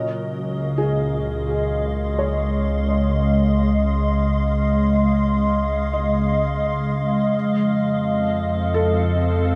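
Drenched in a huge ambient reverb with an eight-second tail and carrying the soft grain of cassette tape, this luminous, serene ambient fragment from a longer piece drifts at 64 BPM in Db major. Up front, a glassy, warbling FM pad with a vintage character swells in slowly on sustained chords, thickened by ensemble chorus and its own reverb. Behind it, a felt-muted upright piano plays mellow, intimate arpeggios through a diffuse delay, while a round, deep analog bass with a filter sweep anchors the harmony as it moves from Dbmaj9 to F7 at 7.3 seconds.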